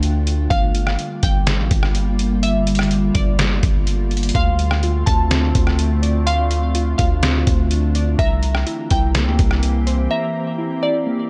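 Spacious and ethereal, this fragment of a longer atmospheric cloud-rap track moves in a half-time hip hop feel. A gritty, pitched-down sampler-style drum kit with a thumpy kick, medium-tuned snare, rim click and hi-hat sits up front beside a deep, sine-toned 808-style bass whose long notes decay. Above them, a glassy FM pad holds slow-attack chords through Dm, Gm7, Dm7 and C7, coloured by ensemble chorus and its own reverb and pumping from sidechain compression. A bright, crystalline wavetable pluck carries the melody through chorus, a low-pass filter and delay. At 4.3 s, warbling, nostalgic lo-fi synth keys join with dark, detuned arpeggios of pulse and sawtooth tone. The drums and bass fall away by 10.1 s, leaving the pad, pluck and keys to ring out in a digital ambience for a brief break.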